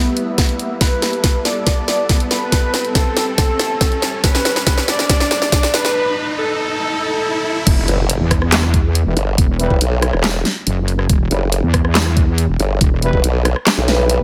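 A filter-swept, detuned supersaw melody over a lush, bright pad opens this aggressive, chaotic heavy wobble dubstep excerpt in E minor at 140 BPM in half-time, as a dubstep drum kit fill, a riser and an electronic kick build through a lush hall reverb until a break at 6.0 s; then at 7.7 s an impact launches the drop, where a saturated, resonant wobble bass and a formant-sweep wobble bass, both with chorus and overdrive, roar beneath mellow brass stabs carrying 12-bit sampler grit and digital delay, with the knocking kick and huge snare up front.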